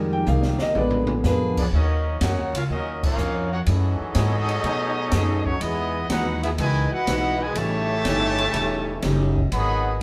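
A stone room's reverb surrounds this sultry, brassy big band swing at 123 BPM, with the band heard playing live together. An intimate grand piano with audible action noise leads the opening over a distant, dark trombone section holding chords, while the drums, with dark cymbals, a high-tuned snare and a boomy kick, play a fill. At 1.6 s a clear trumpet section with light vibrato takes the melody over a tight, vintage trombone section on a second line. A woody pizzicato upright bass sits up front throughout, a boxy picked acoustic guitar stays in the background, and the band hits an accent at 2.9 s as the chords move through Ebm7, B13 and Emaj7.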